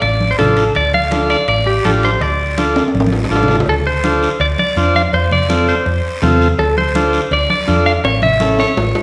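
A wet hall reverb surrounds this short cut from a longer cumbia, and the danceable, passionate piece moves at a brisk 165 BPM in D minor with a straight 4/4 feel. Up front, a bright, twangy clean electric guitar carries the melody with a picked, compressed tone and a splash of spring reverb. Beneath it, a round, dark hollow-body short-scale bass holds the low end, while a buzzy vintage combo organ enters at 0.4 seconds to fill in the harmony. Congas with hard hands and a thin, band-limited skin sit in the background alongside ringing metal-shell timbales and cowbell, and a raspy guiro scrapes through the mix. The harmony moves from D minor to F, back to D minor and then to A, and drum fills arrive at 2.8 and 8.0 seconds.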